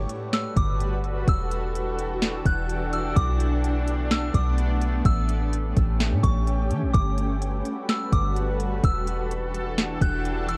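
A worn, warbling cassette haze with pitch drift wraps this hazy, spacious cloud-rap excerpt at 127 BPM in a half-time 4/4 feel, where a shimmering, ethereal pad with octave-up glow, chorus and sidechain pumping holds sustained chords through Gmaj9, Em11, Bm7 and A7, a delicate, tinkling FM bell carries the melody through chorus and tape echo, a deep, round 808-style bass sits up front, and an overdriven electronic R&B kit with soft kick, sharp snare and crisp hats enters at 0.1 seconds.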